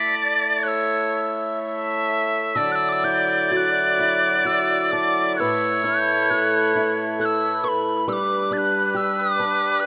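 In a loose, rubato 3/4 that drifts around 61-70 BPM, this tender, nostalgic Celtic slow air is a short passage cut from a longer piece, tuned slightly low to A4 = 439 Hz. A hollow tin whistle carries the melody high in its range, airy and chiffy with tongued notes, vibrato and lifted highs, trailed by a tape echo. Beneath it, a trumpet with a metal mute sits up front on a second line, its tone buzzy, thin and brilliant, with a vintage, classical-style vibrato. A hand-pumped harmonium holds reedy, breathing chords underneath, moving from Asus4 and A through Dadd9 and Asus2 to a closing G. At 2.6 seconds a fingerpicked acoustic guitar joins with a boxy, swing-inflected accompaniment that adds a warm lower register. The sound is a rough home demo with light reverb and the close feel of a small room.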